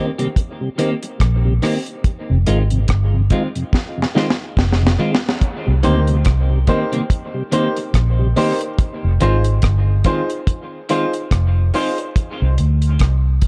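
A slow, loping 4/4 pulse with a swung sixteenth-note feel drives this deep, spacious dub reggae cut, taken from a longer piece. A dry, dark drum kit sits up front with a high-tuned snare, tight kick, rim clicks and hi-hat, and a drum fill from 3.7 to 5.4 seconds closes the opening break. A round, foam-muted electric bass enters at 1.2 seconds and dominates the mix with punchy, amped low notes. A bright, twangy clean electric guitar, compressed and bathed in lush chorus and dub echo, shares the accompaniment with a mellow tonewheel organ through a stopped rotary speaker, which drops out at 8.5 seconds. A boxy grand piano adds intimate stabs with audible action noise and long sustain, while a filter sweep over the closing seconds colours the Fm7 change before it settles on a rootless Bbadd9, all within a dark production and light room reverb.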